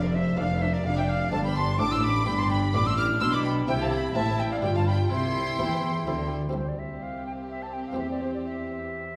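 Flute, violins, harpsichord, cellos and double basses sound together from the opening moment of this short excerpt from a baroque-style concerto movement in C major, set in a brisk, straight 3/4 at 126 BPM with a brilliant, festive mood. The concert flute carries the melody with a pure, straight tone and tongued notes, doubled by a symphonic violin section whose lush vibrato, soft attack and smooth top lend the line a gentle glow. A chamber violin section adds a close, expressive second line. Violas enter at 0.1 s with a focused, rich inner accompaniment, while a buff-stop harpsichord plucks a muted, lute-like, dry part in the background. The bass is held by a cello section bowing with vibrato and portamento, joined by a distant double bass section that drops out at 6.5 s as the music moves from Dm/F through G, C and G7 into a new section settling on C and C/E. Everything sits in a recital hall reverb of about 1.7 seconds, heard from further back in the room.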